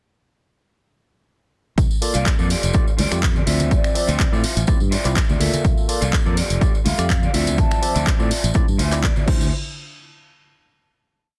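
Dense, heavily limited and dry, this groovy, nostalgic filtered disco house piece in D minor at 124 BPM drops in at 1.8 seconds with a punchy, tape-warm four-on-the-floor kick, a programmed kit of claps, snaps, hats and crash, close tambourine and congas, and a funky syncopated fingered bass, with the bass, hats, cymbals and percussion pumping to the sidechain, while a barky, overdriven tine electric piano with phaser and 12-bit grit plays dotted-rhythm chords, a dark, slightly broken-up guitar chops funk chords, and a hollow, airy flute with dub echo floats short phrases in the background until 8.1 seconds, before a clean guitar fill leads to the final hit at 9.5 seconds.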